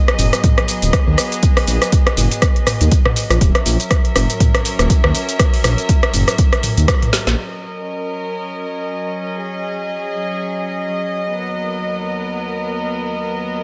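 Afro house with a spiritual, hypnotic pull, this short cut from a longer piece sits in a swung groove. An overdriven electronic kick with a deep, up-front thump drives the pulse, while an afro-pop drum kit adds woody snare, metallic hi-hats, rim clicks, shaker and toms, all given grit by overdrive and the close sound of a small room. Beneath them, a dark detuned saw bass rumbles with a beating, mellow weight, its tube saturation and sidechain pumping making it breathe. A rich chamber string section sustains bowed chords throughout, sounding distant and reedy with light vibrato, gut-string tone and a period-style character, and it too pumps with the sidechain. A band accent at 6.9 seconds and a drum fill at 7.1 seconds close the rhythmic passage, and from 7.4 seconds the strings carry on alone in light reverb.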